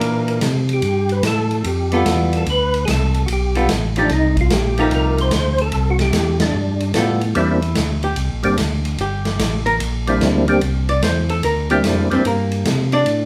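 Soul jazz organ trio in C mixolydian, swinging and greasy at 147 BPM in 4/4 with swung eighth notes, taken from a longer piece. A percussive tonewheel organ carries the melody between G3 and C5, its mellow, round tone given third-harmonic percussion, chorus vibrato and a slow rotary speaker, sitting up front until 12.2 seconds. Underneath, a second tonewheel organ handles the bass line from G1 to C3, full and lightly overdriven with audible key click, chorus vibrato and the same slow rotary swirl. A miked, amplified hollow-body archtop guitar comps in a dark, clean, picked voice, then steps out for a solo from 7.4 seconds over chords moving through C9, G9 and F9. A big-band drum kit swings on ride, hi-hat, a medium-tuned snare and a punchy kick, catching a band accent at 6.3 seconds, all sounding natural and live in one large studio room with moderate reverb.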